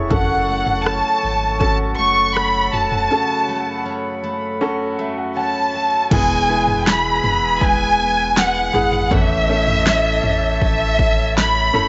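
A clear grand piano, a distant, airy flute ensemble holding sustained chords and a round sine sub bass open this hopeful, emotional pop ballad at 80 BPM, joined at once by a bowed violin section carrying the melody up front with expressive vibrato and slapback echo, full-bodied picked acoustic guitar arpeggios, and a deep house drum kit with a punchy kick and fat snare. A break runs from 3.1 s, and the piano plays a fill from 4.6 s before the harmony moves from F#m to E at 6.1 s and then to A. The mix sits in a moderate spring reverb and the top end stays muted, with this section cut from a longer piece.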